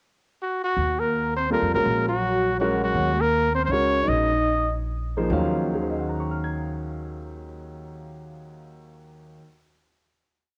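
Searching and hypnotic, this brief modal jazz piece in 3/4 swings at 139-164 BPM in Eb dorian over a held Ebm7, slowing from 3.0 seconds into an Ebm9 final chord at 5.3 seconds. A clear, punchy trumpet states a forceful motif-based melody with light vibrato from 0.4 seconds, joined by a breathy, whispered trombone with scooped notes in octave doubling. Beneath them, a woody gut-string upright bass plays a thumpy two-feel line and a warm, up-front baby grand piano comps in syncopated quartal voicings, while the horns and piano carry a cassette tape colour inside a moderate spring reverb.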